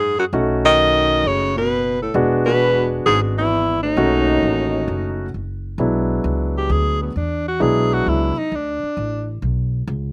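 A dry, close sound with little reverb and an open-air feel frames this brief excerpt from a longer piece of small-group swing and bop jazz at 132 BPM in 4/4, swung on the eighths, with a sophisticated, warm mood. The up-front alto saxophone carries the melody with a clear, punchy, forceful tone, smooth top and vibrato, touched by a slapback echo, then takes a solo from 5.8 seconds. Beneath it, a breathy baritone saxophone plays a whispered, intimate second line with subtone, soft attacks and scooped notes, stopping at 5.3 seconds. The pizzicato upright bass sounds woody and up front, running through the whole passage, while a polished concert grand piano accompanies with long sustain, deep bass and audible action noise, also carrying a slapback echo. The harmony moves between B7 and E7, shifting to E7 as the solo section begins.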